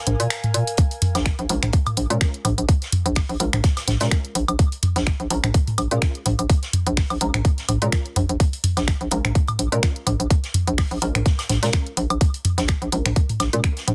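A tight, up-front electronic kick lands at 0.8 s to drive this hypnotic, sparse minimal techno cut in Bb minor at 126 BPM with a light 16th-note swing, joining a hollow, bouncy FM bass, an overdriven techno kit of finger snaps and hi-hat, dry, tape-warm electronic toms and woodblock, and a faint small-room vintage kit of hi-hat and snare that are already running from the opening moments, while a breathy pad sounds only at the start before the drop and a muted, detuned dub chord stab with phaser, chorus and echo arrives at 1.5 s over a dense, heavily limited mix.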